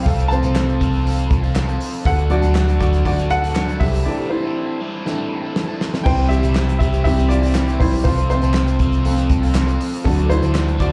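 Piano-driven pop with a warm, uplifting mood, this short cut from a longer piece moves in a straight four-beat feel and sounds like a live club gig heard through the venue's PA, with light reverb around it. A woody, polished upright piano sits up front carrying the accompaniment and a solo throughout, touched with slapback echo, while a crunchy, double-tracked overdriven guitar plays a bright picked riff beneath it, colored by phaser and slapback echo. A vintage muted electric bass, dark, round and foam-muted, sits up front in a low register, and a damped 70s drum kit with a fat snare, tight kick, hi-hat, crash cymbal and handclaps keeps the groove dry. Crisp group handclaps, distant and set in a large room, stay in the background from 0.6 seconds. A break arrives at 4.1 seconds with a drum fill at 5.1 seconds leading back into the repeated section at 6.1 seconds, as the harmony circles through F over C, D and C.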